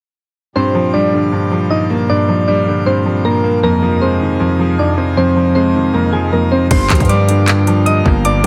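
Hard-hitting, melancholic trap hip hop at 156 BPM in a half-time feel, set in G phrygian and cut from a longer piece. From 0.6 seconds a soft, round synth with an electric-piano character carries the melody up front, coated in chorus and analog delay, while a concert grand piano with deep bass supplies accompaniment through its own delay. Beneath them a pipe organ on its plenum holds sustained chords with a full, brilliant, romantic voicing, set lower in the mix as the harmony moves from Gm7 to Fm7. At 6.7 seconds, as the harmony returns to Gm7, a growling, buzzy 808-style bass enters alongside an up-front electronic trap kit of hard-clipped kick, metallic hi-hats, handclaps and crash cymbal, the kit also touched by analog delay. The overall mix is echo-heavy, with light reverb and digital ambience.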